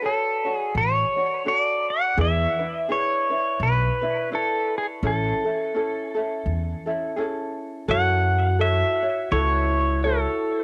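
A twangy, up-front electric pedal steel guitar opens this sunny, languid Hawaiian excerpt at 84 BPM in A major, its clean, compressed slide melody shaped by volume swells and tape echo over a mellow, lightly fingerpicked acoustic ukulele, both carrying a cassette-tape sheen. A woody, thumpy pizzicato upright bass joins up front at 0.7 seconds, anchoring a gently swung 4/4 through Dmaj7, E7 and Amaj7. At 7.9 seconds the harmony moves to F#m7 and a ringing, metallic vibraphone with hard mallets and motor off adds a brief second line in a boxy small room, all within a light reverb that gives the piece a homespun cassette feel.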